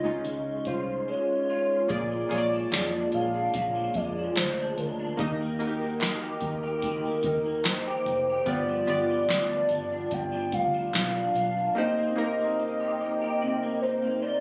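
Hazy and sunny, this 73 BPM indie and bedroom pop fragment moves in a straight 4/4, cut from a longer piece and heard as if captured on a phone in the room, with light club reverb and compression. A warbling, nostalgic synth lead carries the melody across a range of Bb4 to G5, its detuned, wave-folded tone mellow and touched with subtle chorus and vibrato. Beneath it, glossy, airy retro synth keys with a cassette-tape wash play the chords up front, while an electric guitar through a small old amp adds a slightly broken-up, picked part treated with ensemble chorus and vibrato. A soft vintage rhythm box with a deep kick, crisp snare and metallic hats sits up front alongside a round, punchy, foam-muted fingered bass. A distant group handclap joins in the background from 2.7 seconds. The drums drop out around 11.5 seconds and the bass around 11.7 seconds, leaving the keys, guitar and lead over a closing Cm7 after a progression through Dbadd9, Bb7, Eb and G7.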